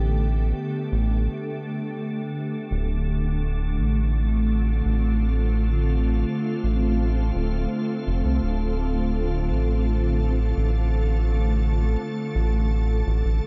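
A soft, organ-like pad and a deep, round analog bass open this hazy, meditative ambient dub piece together at 84 BPM in D dorian, tuned to A4 = 438 Hz. The pure, detuned pad holds sustained chords through ensemble chorus and its own reverb, while the up-front bass adds a ring-modulated edge beneath it, with a break at 1.3 seconds before the harmony moves from Gadd9 to Dm7 at 2.7 seconds. A huge ambient reverb soaks the whole dreamy mix, and this section, cut from a longer piece, runs to about 13.5 seconds.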